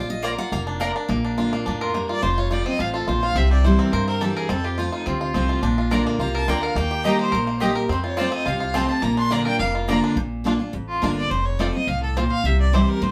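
A clear, focused fiddle carries the melody from 1.8 seconds, bowed by one player with light vibrato and set back at a slight distance, in this rustic, joyful bluegrass excerpt in Bb major at 212 BPM in a straight 4/4. Beneath it, a bright, full-bodied dreadnought guitar provides picked accompaniment and briefly takes a solo at the very start, while a twangy, percussive banjo played with fingerpicks rolls out arpeggios. An upright bass, plucked, woody and thumpy, sits up front and anchors the low end. A bright mandolin with double strings adds short stabs near the opening and again from 5.9 to 10.0 seconds. The harmony moves mainly between Bb, F and C with a turn to Eb, and the band sounds as if it is playing live together in one room with a moderate studio reverb.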